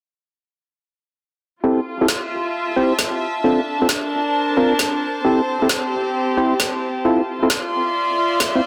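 A hollow, dark organ stab with a fast attack, chorus and digital delay punctuates this bouncy, sunny two-step UK garage excerpt at 133 BPM in F major, cycling through Fmaj7, Bbmaj9, Am7/C and Dm9 from 1.6 seconds. A reedy, gut-string ensemble of bowed strings with light vibrato spreads a period-style texture alongside it, while a woody, layered electronic snare enters at 2.1 seconds with a swung 16th-note feel. The mix sits up front in a plate reverb with digital ambience and carries a dense, heavily limited modern master.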